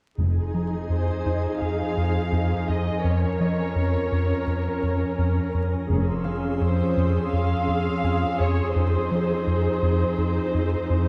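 A dark production with vinyl crackle and light reverb frames this mysterious, eerie excerpt from a suspense film score in F minor, moving at 84 BPM in 4/4 through Fm7, Bbm/F, Dbmaj7/F and Ab/F. An up-front, round analog bass riff anchors muted cello and viola sections, con sordino and veiled, while a glassy FM pad with ensemble chorus holds ethereal chords and a concert harp rings softly in the background. Muted violins carry a bowed melody from 0.9 seconds, the double bass section touches a low F in brief bursts, including one at 5.9 seconds, and a high violin texture enters in the background at that same point.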